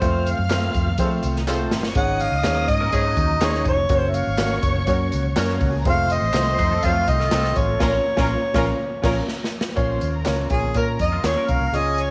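Vinyl crackle and a light small-room reverb frame this driving, passionate excerpt of uptempo 1960s-style soul at 123 BPM in Bb minor, where a mellow, up-front harmonica carries the melody with scooped notes over a lush, distant violin section, a woody, slightly detuned upright piano, a dark, round muted electric bass and a swinging big-band drum kit with a punchy kick, joined by barely audible low-tuned congas, very quiet tambourine and handclaps, a smooth jazz-style horn section from 1.0 to 9.2 seconds, and a bright, twangy guitar riff through a small old amp with ensemble chorus entering at 2.8 seconds, before a band accent gives way to a harmonica solo at 9.8 seconds.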